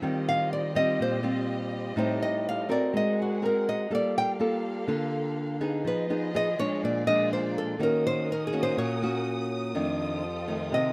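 Sophisticated and breezy, this bossa nova excerpt at 124 BPM in straight 4/4 features an up-front, fingerpicked nylon-string guitar solo whose melody enters at 0.3 seconds over a second nylon-string guitar's small, acoustic accompaniment, while a dark, lush studio violin section holds bowed, vibrato-rich sustained chords beneath as the harmony moves from Eb69 through Am7b5, Gm9 and Bb7 to F13, set in light reverb.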